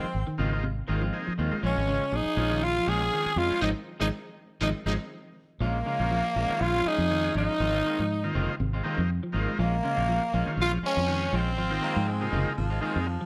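A lightly swung sixteenth-note groove at 121 BPM in 4/4 drives this hypnotic, driving afrobeat passage in Bb minor, cut from a longer piece and cycling between Ab6 and Bbm7 chords. A round, dark, foam-muted fingered electric bass sits up front beside a growling, breathy, close-miked tenor saxophone carrying the melody, while a brilliant, punchy trumpet plays a second line in the background with a slapback echo. A clean, picked electric guitar spins arpeggios through an analog chorus, and a twangy, slightly broken-up second guitar adds stabs with its own slapback echo, joined from 0.4 s by a buzzy vintage combo organ with heavy vibrato. The band hits a shared accent starting at 3.6 s, and at 11.8 s a distant, roomy baritone saxophone with a raspy edge slips in as another second line. A moderate large-studio reverb gives the ensemble a sense of space.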